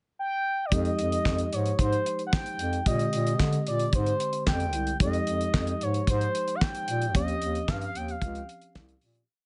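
Late-night and slick, this short early-eighties boogie funk piece opens with an expressive synth lead alone, its smooth sawtooth-and-triangle tone colored by chorus, vibrato and a moving notch, before the band enters at 0.7 seconds beneath its motif-based, song-like phrases. A mellow tine electric piano holds clean drop-2 chords with grace notes, while a soft-attacked bass clarinet carries a syncopated boogie bass line with slides, and an up-front, dry, dark 70s drum kit drives a four-on-the-floor beat with tight kick, hi-hat and a fat snare layered with handclaps. The mix sits in a studio reverb with a dulled top end, fading out from 7.1 seconds.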